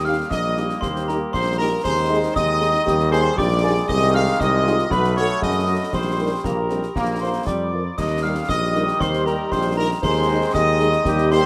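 A military-style march for wind band in Eb major, this spirited, rousing excerpt moves at 117 BPM in a straight 2/4 and is cut from a longer piece. A mellow trumpet section carries the melody with a soft attack and light vibrato, while the mellow French horn section fills in accompaniment from the background and the clear trombone section holds sustained chords. Up front, a warm tuba anchors the bass, and a euphonium, distant and roomy, joins the airy, hollow piccolo, a very quiet woodwind section and a bell-like glockenspiel played with soft plastic mallets on secondary lines. Concert snare drum, concert bass drum and clash cymbals with a dark cymbal tone sit close and dry, entering at 0.3 seconds. The harmony moves through Eb, Ab and Bb chords along with a B7, and a light reverb lends the band some space.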